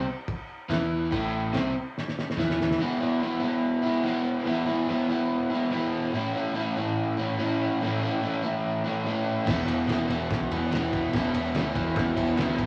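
Recorded at home on cassette in a small room with light reverb, this cut from a longer garage rock piece sounds raw and swaggering in a straight 4/4. A crunchy, double-tracked overdriven guitar riff runs up front throughout, joined at the start by growling picked bass with tube saturation and, a moment later, a muffled, cloth-damped kit whose fat snare, tight kick and dark crash and ride cymbals close the opening with a drum fill from 1.9 to 2.8 seconds. The guitar then carries on alone until bass and drums return at 9.5 seconds.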